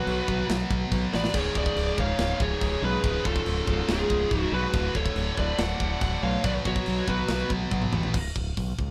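Dark and relentless, this heavy metal passage, cut from a longer piece, drives forward in a straight four. Two dark, distorted high-gain lead guitars carry the melody and a second line together, then stop at 7.5 seconds. Beneath them, three bright, picked high-gain rhythm guitars churn out a low riff from the background, one of them double-tracked and very quiet. A growling fingered electric bass, overdriven and up front, anchors the bottom, while a tight, warm acoustic metal kit with a mid-forward sound, medium-tuned snare, tight kick and rolled-off top works china, crash, hi-hat, kick, snare and toms, with fills early on and again near 7.7 seconds. The harmony moves from B5 through C# and D before returning to B5 and landing on C#5, all played as a band live in one room with light reverb.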